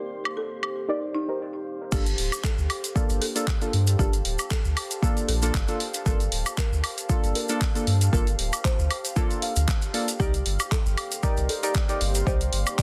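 Deep house at 116 BPM in G minor, this smooth, late-night passage cut from a longer piece moves with a swung 16th-note feel over chords shifting from Cm9 to Gm9 and back to Cm9 at 10.2 seconds. A woody, soft-mallet folk marimba carries the melody in the background throughout, dry and rustic with a digital delay, while a warbling, nostalgic lo-fi pad adds detuned texture with chorus, reverb and sidechain pumping. A dark, moody ambient pad holds sustained chords only at the opening and again from 11.0 seconds, and a filter sweep shapes the drums and intro before the drop arrives at 1.9 seconds. There the round sine sub bass, an up-front overdriven kick re-recorded in a small room, and grainy, saturated maracas all enter together. An evolving chord stab with 12-bit sampler grit and dub echo pulses beside a layered house kit of crash, handclaps, hi-hat and woodblock, its snare softly clipped, all sitting in a dense, heavily limited master with light reverb.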